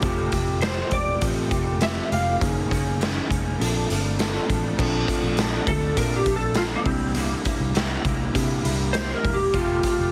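A straight 4/4 groove from a raw, gritty garage drum kit with a boomy kick, up front in a pumping stone room, drives this laid-back, sunny indie and bedroom pop excerpt, where a round, punchy foam-muted fingered bass and a slightly broken-up picked electric guitar through a small old amp, warbling with analog chorus, sit beside a mellow tine electric piano colored by cassette tape, while a dark, compressed electric slide guitar with ensemble chorus and slapback echo enters at 0.6 seconds and takes a solo from 4.8 seconds, the mix sitting under light reverb and a heavily compressed radio sound.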